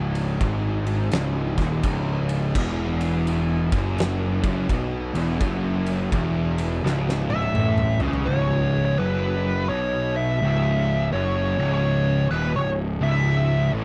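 A bright, double-tracked distorted electric guitar and a dark, thick fuzz guitar open this brooding, heavy stoner and doom metal excerpt on a C# minor riff at a swung 84 BPM in 4/4, over a growly, overdriven picked bass and an up-front, oversized low-tuned drum kit with a boomy kick, fat snare and dark cymbals in a pumping room, while a second, very quiet fuzz guitar joins at 2.5 seconds, a compressed fuzz lead guitar with wah and slapback echo enters at 7.3 seconds, and the drums end on a fill at 8.3 seconds as the riffs carry on in a dry mix.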